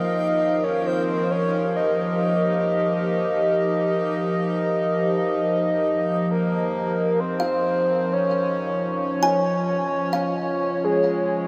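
Floating in free time, this luminous, serene ambient fragment, cut from a longer piece, places a breathy, flute-like synth lead with gentle vibrato up front over a warbly, nostalgic tape-like pad of dark sustained chords. Beneath them sit a barely audible organ-like drone and a very quiet reversed, granular swelling texture that fades out by 7.2 seconds. At 7.4 seconds a woody, hollow kalimba enters with short, airy arpeggios trailing through diffuse delay, all within a huge, wet ambient reverb.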